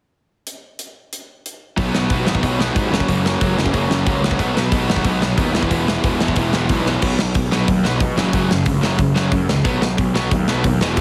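Punk rock with a rebellious, rowdy feel, this excerpt opens on a big, up-front acoustic drum kit with a tight kick, medium-tuned snare and rolled-off top before a bright cranked stack guitar, a dark compressed overdriven electric guitar and a growly, punchy fuzz bass crash in at 1.8 seconds, with a drum fill at 6.9 seconds leading into the next section, all under light reverb and a heavily compressed radio sound.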